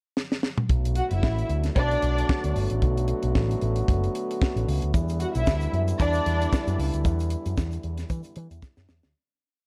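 A tight funk drum kit opens with a short fill in the pickup bar before the groove settles at 114 BPM in B minor, a driving, glamorous disco piece with a light swing on the sixteenths. The dry kit sits up front with a high-tuned snare, a tight kick playing four on the floor and sixteenth-note hi-hats, while a picked electric bass run through an envelope filter enters at 0.7 seconds with a round, amped, syncopated disco line. A mellow French horn section holds sustained chords beneath, moving from Bm7 to Em7, and a dark, woody string section with vibrato and a smooth top plays short, lush bowed riffs as a second line until 6.7 seconds. A grainy egg shaker adds soft sixteenths in the background from 4.9 seconds. The dark production carries a light studio reverb, and the piece fades out over its final seconds as the drums close with another fill.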